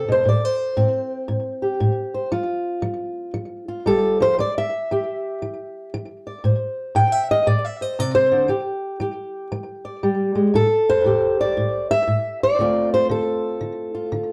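Acoustic country blues in A minor, soulful and mournful, moving at 117 BPM in 4/4 with a swung eighth-note feel, cut from a longer piece. A single fingerpicked, ladder-braced acoustic guitar with old strings carries the whole thing, sitting up front with a woody, boxy tone and a slapback echo, ranging from A2 to G5 through chords like Am7, F5, Em7 and Dm7. The production is dark and warm, set in a short, wet booth ambience, with the guitar's solo passage running to 10.5 seconds before a second section closes out at 14.3 seconds.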